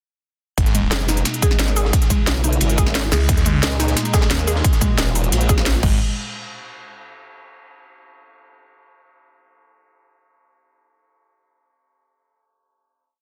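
A dark, tense technical drum and bass piece in G# minor at 177 BPM opens its drop at 0.6 s with a punchy, tape-warm electronic kick up front, a tight kit of cracking snares, crisp hats, shaker and crash, and a gritty, saturated breakbeat loop with a rolled-off top tucked beneath. A swirling, phased detuned saw bass fires chopped phrases while a chorused formant-sweep wobble bass carries modulated phrases with changing wobble speed, answering it over a G#m, C#m, D#sus4, F#add9 progression. From 0.7 s a lo-fi, warbling pluck plays an 8-step sequence with digital delay, joined at 1.0 s by an evolving, slow-attack resonant pad, both pumping quietly in the background, all within a dense, heavily limited, mechanical mix that ends on a final hit at 6.0 s.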